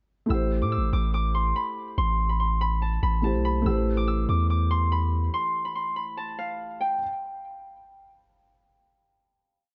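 Half-time drill hip hop in 4/4 with a menacing, dark mood, where a thumb-plucked Celtic harp loops a ringing, low-pass-filtered melody up front until 8.4 s over held, spread chords from a felt-muted, filtered upright piano that sounds boxy and intimate with audible action noise, while a deep, sine-toned 808-style bass sustains long sub-bass notes with pitch slides until 5.3 s, all set in a small room with a dull top end.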